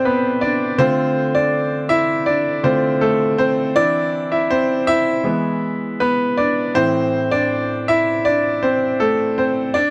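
Pop piano piece in A minor at 80 BPM in a straight 4/4, heartbroken and emotional in mood, cut from a longer work. A brilliant concert grand plays solo across the whole 9.9 seconds, ranging from A2 to E5 with deep bass and short sustain, moving through Amadd11, Dmadd9, Cadd9/E and E before settling back on Am at 6.8 seconds. The piano sits up front in a dry, close 1970s-style studio sound with little reverb.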